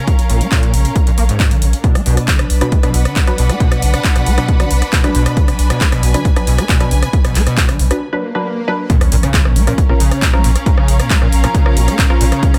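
A squelchy, gritty acid bass riff, distorted and pumping with chorus and delay, leads this hypnotic, industrial peak-time techno cut at 136 BPM over Bbm and Bm chords. It is backed by a punchy electronic kick, a drum kit of handclaps, rim clicks and metallic hi-hats, a thick saturated sub bass and a lush bowed string section. Muted dub chord stabs with chorus and delay join at 2.6 s. A background swell rises through the break, and an impact lands on the drop at 8.9 s, all in a dry mix.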